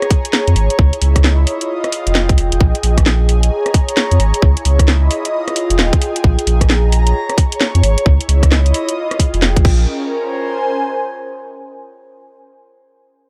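A garage kit with a cracking snare and warm hats opens this late-night, bouncy two-step garage excerpt alongside an airy, breathy pad whose detuned, chorused sustain pumps against a tight, up-front electronic kick, all in a swung 4/4 groove over minor seventh and ninth chords. A deep, thick, saturated sub bass enters at 0.5 seconds, and the mix stays dry and gritty with a small-room punch. After the drums and bass stop near 9.9 seconds, the soft pad carries on alone to the cut at 11.7 seconds.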